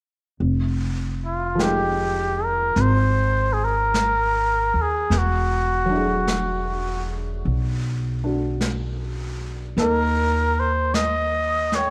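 A cup-muted trumpet leads from 1.3 seconds, its veiled, raspy tone carrying light vibrato, scooped notes and a growling edge, close and up front with a slapback echo. Beneath it, this slow, melancholic and intimate jazz excerpt moves at 51 BPM with a swung feel: a woody pizzicato upright bass and a brushed kit in a small, natural-sounding room start at 0.4 seconds, and a slightly detuned upright piano with short sustain joins at 1.6 seconds. The harmony passes from Fm9 to E9 and settles on Eb5, all wrapped in light studio reverb.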